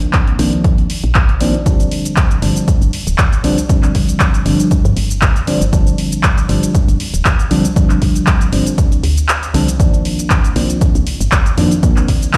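Mellow FM electric piano stabs open this hypnotic, smooth deep house cut at 118 BPM, their round, full-bodied tone carrying a faint noise layer and colored by chorus, phaser, digital delay and sidechain pumping. A punchy analog drum machine adds handclaps, hi-hat and shaker over a swung 4/4 groove, joined by a tape-warm electronic kick and, from 0.4 seconds, a woody, dark FM bass thickened by tube saturation. The chords move from Cm11 to G7sus4 and back, the kick drops out briefly at 9.3 seconds, and a large studio reverb gives the sound the feel of a big system in a bare room.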